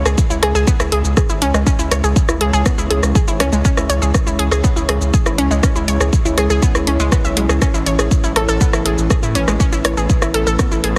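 A straight 4/4 pulse at 121 BPM drives this dark, cinematic melodic techno excerpt in C# minor, built on a punchy, up-front electronic kick and a tape-warm analog drum machine supplying hi-hat, rim click and shaker. A gritty, nasal, saturated synth bass holds the low end while a lush, detuned unison pluck plays tape-echoed arpeggios with a cassette-tape tint, and from 1.1 seconds a deep, moody ambient pad sustains chords with chorus and reverb, with the bass, pluck and pad all pumping against the sidechain. The harmony rests on C#m before shifting to Aadd9 at 7.6 seconds, and the mix carries a heavily compressed, radio-like sound with light reverb.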